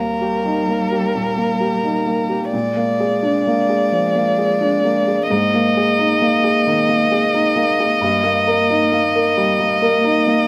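Light reverb surrounds this brief passage cut from a longer neoclassical piece for piano and strings, tender and hopeful in Eb major and tuned slightly low to A4 = 436 Hz. A felt-muted upright piano, soft, mellow and intimate up front, carries the accompaniment. A single con sordino violin, veiled with gentle vibrato and a soft attack, sings the melody, while a dark, bowed cello adds a smooth second line in the background. All three play throughout the 10.5 seconds in a slow, rubato 6/8 at 44 BPM, moving through Eb, Bb7, Absus2 and Eb/G.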